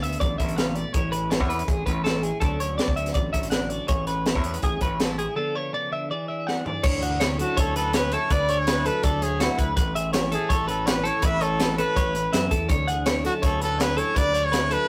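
At a brisk 163 BPM in straight 4/4, a crisp acoustic fusion kit sits up front in a small, pumping room, its high-tuned snare and punchy kick driving crash, hi-hat and toms through this playful, bright cut from a longer math rock and midwest emo piece. Two clean, picked, compressed twelve-string electric guitars share the harmony: one plays accompaniment, the other a twangy arpeggio line tucked into the background. Beneath them, a growling fingered bass, direct and amped with overdrive, anchors the low end. The changes move through Dm6, Amaj7 and Dmaj7 before a break at 5.4 seconds passes through Dm6 and E7 and ends on a drum fill. The music then opens onto broader Dmaj9#11 and Amaj9 chords, where a clear, close-miked trumpet enters at 7.4 seconds, carrying a pop-style solo melody up front with light vibrato. Light reverb and a rough rehearsal-room sound give the whole take a loose, live character.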